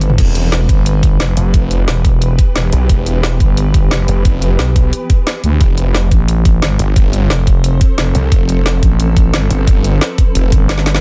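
A snarling, detuned saw bass with a moving notch, driven hard through overdrive and sidechain pumping, leads this tense, aggressive stretch of dark technical drum and bass at 177 BPM in E phrygian, alongside a thick, growling FM bass, as the harmony shifts from Em to F at 5.6 seconds. Up front, a knocking electronic kick drives an overdriven kit with a woody snare, bright hats, crash and toms, opening with a drum fill and closing on a brief break at 10.7 seconds. Beneath it all, a swarming granular drone sustains chords with a slow attack, its own built-in reverb and sidechain pumping, inside a dense, heavily limited mix cut from a longer piece.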